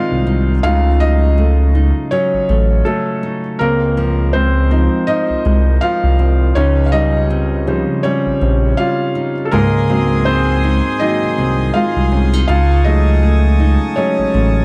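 A soft, intimate felt-muted upright piano takes the lead alongside a fingerpicked nylon-string guitar with audible finger squeak and a touch of delay, joined at 0.1 seconds by an up-front, detuned synth bass, as this tender, romantic contemporary R&B excerpt moves at 81 BPM with a gentle sixteenth-note swing through lush chords from Ab7 to Dbmaj7, before a reedy, slowly beating accordion adds sustained chords from 9.5 seconds in a dark, small-room production.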